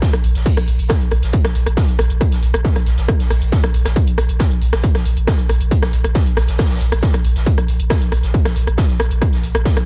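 A straight 4/4 pulse drives this hypnotic, relentless stretch of peak-time techno, cut from a longer piece. An overdriven electronic kick sits up front, heavy and layered, while a second electronic kit adds crash cymbal, hi-hat and rim click with its own overdrive. Beneath them a raw garage kit brings acoustic hi-hat and a medium-tuned snare from a small room. Its sound is gritty and mid-forward with a rolled-off top, and the hats are filtered and pump against the beat. From 0.1 seconds a deep, thick sub bass with a triangle tone and fast attack holds sustained notes through tube saturation, low-pass filtering and sidechain pumping. The whole track has little reverb and the close, worn character of a home cassette recording.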